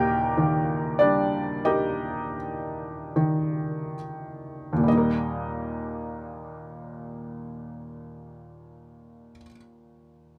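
The rhythm moves freely in a rubato 4/4, drifting between 34 and 51 BPM and slowing down over the first 4.9 seconds. This is a lyrical classical solo piano piece in Eb major, cut from a longer work, with a peaceful, warm mood. A felt-muted upright piano plays alone for the full 10.4 seconds, ranging from Eb2 to G5, its soft, mellow tone shaped by thin felt and accompanied by audible action noise. The instrument sits up front in an intimate, close sound, touched by light reverb. The passage opens on an Eb chord and moves from its first section into a second at 4.9 seconds.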